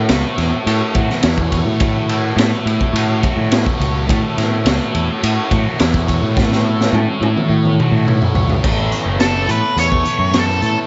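Psychedelic rock at 106 BPM in a straight 4/4, this short excerpt cut from a longer piece feels trippy and hazy, sitting on F#m7 before moving to Aadd9 at 8.6 seconds. A reedy combo organ with light vibrato holds clean sustained chords in the background, while a thick, double-tracked fuzz guitar drives a bright, picked riff through distortion and a phaser. Up front, a growling fingered electric bass, overdriven and punchy, anchors the low end, and a raw garage drum kit of kick, snare, toms, hi-hat, ride and crash sounds gritty and saturated, with dark cymbals and a pumping small-room character. The drums play a fill from 6.4 to 8.6 seconds, and at 9.2 seconds an octave-fuzz lead guitar enters with a dark, distorted melody treated with slapback echo. The whole mix sits in a small room reverb with a rolled-off top that keeps it hazy.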